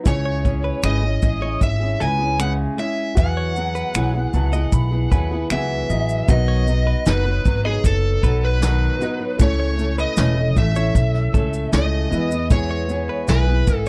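Easy-going and heartfelt, this short acoustic pop passage, cut from a longer piece, moves at an unhurried pace in a straight four. A vintage brush kit sits distant and roomy, with a punchy kick, medium-tuned snare, shaker and finger snaps under a rolled-off top, while a woody, dark pizzicato upright bass sits up front. A fingerpicked flamenco guitar and a boxy upright piano in the background fill out the accompaniment, and a clean, compressed electric guitar recorded direct weaves quiet picked arpeggios. Over this, an overdriven slide guitar played with fingerpicks carries the melody with a warm tone. The piano adds a fill from 4.0 to 6.3 seconds over C#m and Eadd9, after which the harmony moves through B, A and E in a new section, all set in a small room.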